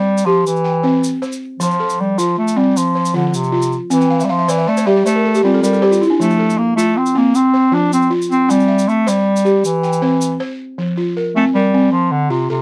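West African traditional string and xylophone music in a hypnotic, joyful 12/8 at 105 BPM in F major, where a bright, roomy bass clarinet carries the classical-style solo melody over woody, buzzing balafon arpeggios struck with soft rubber mallets, which break into a fill from 4.0 to 6.2 seconds, while a grainy, vintage tube shaker plays from 0.2 to 10.3 seconds, all captured in a dry, close 1970s-style studio sound with light reverb in this short fragment of a longer piece.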